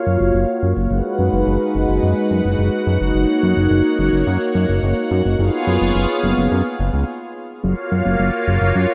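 A swirling, detuned sawtooth pad opens this dreamy, uplifting synthwave excerpt, holding sustained chords through a phaser and chorus while a filter sweep moves across it. A fat, saturated analog bass enters at 0.1 seconds, thick and up front with a fast attack and long sustain beneath the pad. The harmony moves from F#maj7 through B6/F#, D#m7/F# and C#7/F#, all resting over an F# in the bass, giving the music a floating, suspended quality. The sweep ends at 7.6 seconds, just after a brief stop, and the chords return to F#maj7 for the closing section. The whole mix is soaked in a cathedral-sized reverb, lending the steady 4/4 groove a hazy, spacious glow.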